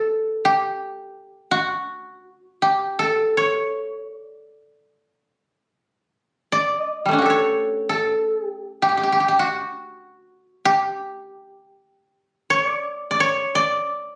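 A solo koto opens this brief fragment of Japanese traditional music, its mellow, woody tone sitting up front and close. The mood is austere and calm, and the playing moves in a free, rubato time that lets each phrase breathe. Played with fingerpicks, the instrument ranges from G3 up to D5, sounding dry and intimate with only a light touch of reverb around it. An opening passage gives way at 6.5 seconds to a second passage that carries through to the end at 14.2 seconds. Captured on a phone in the room and given a touch of studio reverb, the recording suits the spare, contemplative feel.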